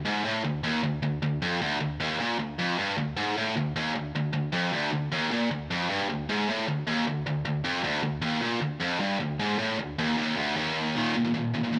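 Aggressive and heavy, this short metal cut from a longer piece drives at 154 BPM in a straight 4/4, with a lone electric guitar playing by itself from 0.1 to 11.8 seconds. The tight, bright distorted tone is picked and double-tracked, sitting up front in the low register between D2 and Eb3. Light reverb gives a digital ambience, and an Eb5 chord lands at 10.9 seconds.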